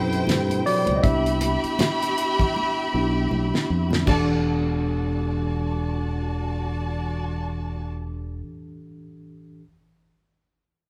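A worn, slightly out-of-tune tine electric piano takes a solo from the start over lush, vibrato-laden bowed violins and a punchy, bright fingered bass in this smooth, cinematic 1970s-style soul fragment in E minor at 79 BPM with a light 16th-note swing, while a dry drum kit with a fat snare and very quiet high-tuned congas join almost at once, the drums playing a fill from 2.6 seconds and stopping at 4.3 seconds, the band sounding live in one large reverberant studio with a faint mains hum.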